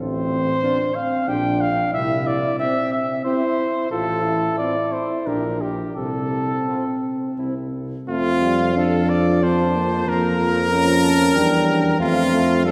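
In a rubato 3/4 moving between 84 and 95 BPM, this stately, triumphant classical brass quintet excerpt in F major opens with a cornet melody over mellow trombone accompaniment and a roomy, distant-sounding tuba bass. At 0.6 s, a bright, close-miked trumpet adds a second line up front while a dark, smooth-topped French horn fills in from the background, both with light vibrato. A lush church reverb places the ensemble further back in the room, and the closing phrase from 8.1 s passes through a Bbm/F and an Em7b5 before settling back on F.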